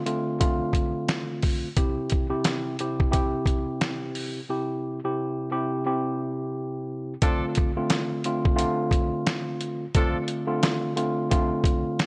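The recording sounds dry and gritty, like hardware gear with light reverb, and it is cut from a longer piece. This is a reflective boom-bap hip-hop groove in D minor at 88 BPM in 4/4, with a 57% swing on the sixteenths. A worn, slightly out-of-tune tine electric piano sits up front, clean and direct under a cassette-tape coloring and filtering, moving between Dm7 and C. A compressed, pitched-down sampler-style kit carries the beat, with a thumpy kick, a medium-tuned snare and hi-hat, all roughened by 12-bit grit and tape warmth. After a break from 4.5 to 7.2 seconds, a jazz-style horn section adds stabs with a smooth top and tape echo, then drops out at 10.2 seconds while the keys and drums carry on.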